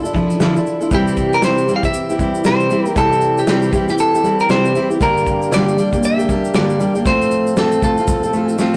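A rough rehearsal-room recording with warm saturation and a moderate stone-room reverb frames this heartfelt, easy-going acoustic pop passage, cut from a longer piece, moving at 117 BPM in 4/4 with a light sixteenth-note swing in C mixolydian. Up front, a fingerpicked steel-string jumbo acoustic guitar lays down a full-bodied accompaniment, while a clean electric guitar carries the melody with a picked, compressed and scooped tone. In the background, a fat, lightly overdriven tonewheel organ sustains chords with third harmonic percussion, vibrato and a slow rotary speaker. A small-room country drum kit sounds dark and smooth, with a fat snare, a punchy kick, a shaker and a rolled-off top, joined from 0.1 s by a grainy, bright tube shaker. The harmony moves from Dmadd9 to C, then Gm and F/A, and the melody stops at 8.6 s as a drum fill arrives.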